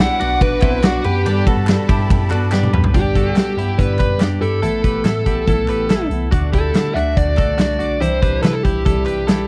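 Bright and youthful, this jangly indie pop piece moves at 142 BPM in G major, cycling through Bm, Gadd9, Asus2 and Cadd9, with a dark, overdriven lead guitar carrying the melody up front through tape echo. Beneath it, a full-bodied fingerpicked steel-string acoustic and a twangy, compressed twelve-string electric playing arpeggios blend with a mellow tine electric piano holding down the bass, while a punchy big rock drum kit with bright cymbals drives things and crisp group handclaps join in the background from 0.6 seconds. A lush, distant bowed string section lays sustained chords until a drum fill at 2.5 seconds leads into the next section at 2.9, where the strings drop out, all captured in a dry, close 1970s-style sound with vinyl crackle.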